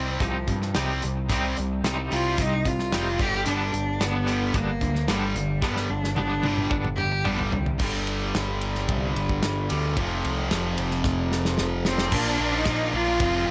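A straight 4/4 pulse at 111 BPM drives this angsty, brooding stretch of quiet-loud alternative rock, cut from a longer piece that moves from C minor through G and F7 to B-flat. A loose acoustic drum kit in a small room, with a punchy kick and a medium-tuned snare, keeps time throughout, breaking into fills at 5.6 and 11.0 seconds, under two overdriven guitars that pick bright riffs in the background, while a growling, round electric bass sits up front. Over them, a single bowed cello takes a clear, focused solo with vibrato and analog delay, sounding distant yet prominent, as a twangy clean guitar picks arpeggios through tremolo and delay. After the cello drops out at 7.5 seconds, a very quiet, flute-like tonewheel organ enters at 7.8 seconds with sustained chords through a slow rotary speaker, and the cello returns at 11.9 seconds. The mix is dry, with little reverb.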